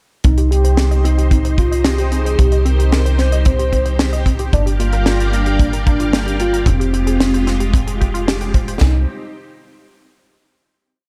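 Synthwave in C minor at 112 BPM, this short, complete piece has a moody, nostalgic feel over a straight 4/4 pulse. A velvety, detuned synth lead carries a motif-based melody with vibrato, chorus and digital delay, sitting over a lush string machine ensemble whose slow-attack chords pump against the beat. A warbling, lo-fi pluck runs a 6-step arpeggio loop that drifts against the bar in the background, while a tight, punchy sequencer bass drives the low end up front with a filter pluck and a moving notch. Two layers of a tight funk drum kit in a small room supply a high-tuned snare, a machine kick and ride bell, plus an 80s-style backbeat with closed hi-hat, both stopping just before 9 seconds. The chords move from Cm through Gm7 and Fmadd9 before settling on a final Cm chord at 8.8 seconds that closes the piece at 11.0 seconds.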